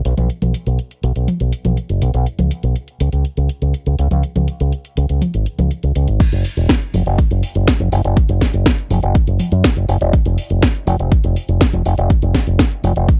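Italo disco at 122 BPM in a straight 4/4, danceable and nostalgic, cut from a longer piece and captured as a dry, close 1970s-style studio recording. A fingered electric bass with an envelope filter and tube saturation runs from the start, bright, direct and punchy between E1 and F#2, joined almost at once by a house drum kit of crash cymbal, hi-hat, cracking snare and toms, tape-warm and re-recorded in a large room. At 6.2 seconds a punchy, layered electronic kick drum enters up front, carrying the second section through to the close.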